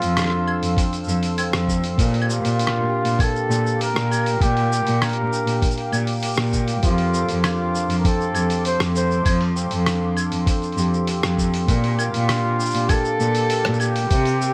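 Vinyl crackle and light reverb frame this playful folktronica excerpt at 99 BPM, where a mellow, distant flugelhorn carries the melody with light vibrato and delay over chords that move between F6 and Bb6. A bowed, up-front cello holds the bass with smooth vibrato, a shimmering hammered dulcimer rings out arpeggios, and a sawtooth analog pad sits in the background with soft chorus and gritty 12-bit sampler character. A muffled, pitched-down, overdriven sampler-style kit of claves, hi-hat, rim click and shaker drives the groove, joined at 0.8 s by a thumpy, compressed electronic kick that sounds re-recorded in a small room.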